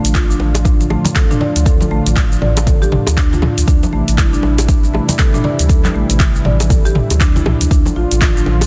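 A swung 4/4 afro house groove drives this short piece, built on a deep, layered electronic kick sitting up front from 0.1 s, with a deep house kit of finger snaps, handclaps, hi-hat, shaker and toms, plus background congas played with hard hands and tight, high-tuned bongos joining at 0.4 s. A round sine sub bass and a mellow, detuned sawtooth pad with chorus both pump under sidechain, while woody, dark marimba arpeggios with delay float over a Dm to Cadd9 progression that returns to Dm. The mood is driving and spiritual, and the sound is dry, dense and heavily limited.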